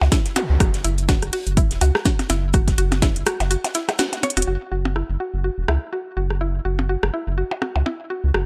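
A punchy, up-front electronic kick drives this quirky, hypnotic minimal techno excerpt at 124 BPM with swung 16ths, alongside a deep, dark analog bass pumping under sidechain, a woody, bright mallet-like synth pluck riff with chorus, cassette tape colour and digital delay, tape-echoed electronic blips and rim click, a house kit with cracking snare and low-pass filtered metallic hats, a very quiet, dry acoustic reggae kit with high-tuned snare, and a brief electronic zap, before the kick drops away at 3.1 s, a drum fill lands at 4.2 s, and the two kits stop by 4.5 s, leaving bass, pluck and percussion in a small room.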